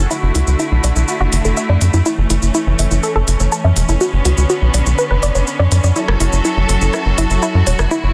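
A tight, punchy sawtooth sequencer bass sits up front and drives this dark, dramatic melodic techno build-up at 123 BPM in F# minor, cut from a longer piece and moving through Dadd9/F#, A/F#, Bmadd9/F# and F#m7. Above it, a lush, detuned unison pluck with a wave-folded edge and a filter sweep plays arpeggios through tape echo, while a clear symphonic string section holds smooth, bowed chords with light vibrato. A layered electronic drum kit with smooth hats, rim click and shaker enters at 0.1 seconds, all set in light reverb within a dense, heavily limited modern master.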